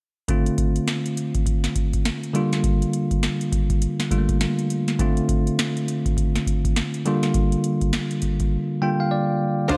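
A bell-like tine electric piano and a booming analog drum machine, with its deep kick, tonal snare, metallic hats and crash, open this bouncy, slick new jack swing cut with a swung sixteenth-note feel, trading between Dm7 and Gm7 chords. The bright, clean piano sits up front and plays a fill from 8.5 seconds. At 9.7 seconds a lush bowed string section with vibrato and a fat, detuned sawtooth bass with a filter sweep arrive just as the clip ends, all set in light digital ambience.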